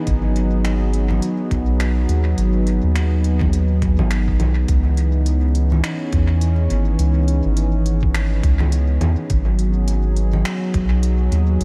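A deep, round sub bass sits up front in this hazy, meditative ambient dub excerpt, its soft tone underpinning a smooth sawtooth pad that sustains chords through a chorus effect, moving from G#m7 to C#m9 at 4.7 seconds and back at 9.3 seconds. A muffled, thumpy, pitched-down kick drum carries a compressed, tape-warm weight, while a quieter electronic kit of congas, finger snaps and smooth hi-hats drifts through dub echo with a gentle swing. Light reverb and a haze of vinyl crackle wrap the mix in a digital ambience.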